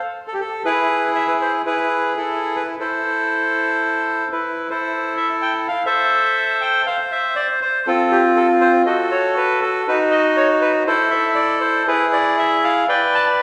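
A lone bandoneon opens the recording at 0.3 seconds, its reedy, boxy voice sitting up front in a melancholic, passionate tango in A minor. The playing moves freely and rubato around a nominal 119 BPM in 4/4, ranging from C4 to A5 as the harmony settles from E onto A minor. Around 4.8 seconds a second section begins, drifting through F5 and D#m7b5 before passing through A5/E and E and landing on Bm7. The bandoneon carries a small-room closeness, yet the whole sound is bathed in a wet reverb with a 2.0-second decay, like a church or concert hall. Cut from a longer piece, this brief fragment ends at 13.4 seconds, still unresolved.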